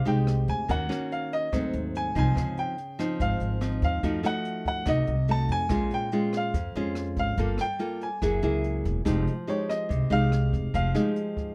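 Wistful and melancholic, this short bossa nova fragment moves at 143 BPM in a straight 4/4 and sits in F minor. A baby grand piano carries the melody high in its range, between Db5 and A5, with a natural, up-front tone and short sustain. Beneath it, a fingerpicked nylon-string guitar with old strings gives the accompaniment a classical, woody, somewhat shadowy color. The pizzicato upright bass, strung with gut, sounds thumpy, woody and warm, reaching down to Fb1 before it stops at 10.9 seconds. A brushed jazz kit of hi-hat, rim click and a boomy kick sits lower in the mix with a dark, smooth character in a small room. The close, detailed recording has little reverb, and the jazz-rich harmony moves from a rootless Fm9 through chords such as Ab7b9, Dbmaj9 and Gb9 before settling back on Fm9.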